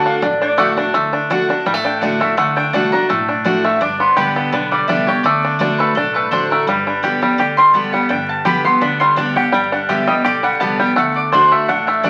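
A round, double-stringed mandolin takes a solo from 0.9 seconds to the end of this joyful, lively bluegrass excerpt, having entered at 0.6 seconds with picked stabs. Up front, a twangy, percussive banjo played with fingerpicks carries the melody. A bright, metallic lap resonator guitar adds a nasal slide line only in the opening 0.9 seconds. A full-bodied dreadnought with fresh strings supplies picked accompaniment, while a woody, dark upright bass sits in the background, plucked on steel strings. The tune moves at 168 BPM in 4/4 with a light swing, in D mixolydian over D and G chords. A wet club reverb and the crackle of a very old 78 rpm record lend the sound a vintage patina.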